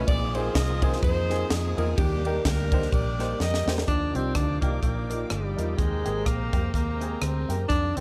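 Uptempo gospel in Eb major at 126 BPM, swung in 4/4 with a hopeful, soulful lift, this clip is cut from a longer piece. A woody, intimate upright piano with audible action noise comps throughout. A gritty, overdriven tonewheel organ with key click, chorus vibrato and a slow rotary speaker holds chords in the background. A dark, foam-muted fingered electric bass supplies a round low end. A punchy, up-front fusion kit with a high-tuned snare and dark cymbals drives the groove on hi-hat, ride, rim click, snare and kick, with a fill from 3.4 to 3.9 seconds. A clear, pop-style saxophone section carries the opening melody over Bb9sus4 and Ebmaj7, then at 3.9 seconds a smooth, up-front tenor saxophone takes over with vibrato and scooped notes in a jazz style, while a rich, bowed string section adds soft sustained chords behind it as the harmony moves through Ebmaj9 to Abmaj9, all set in light reverb.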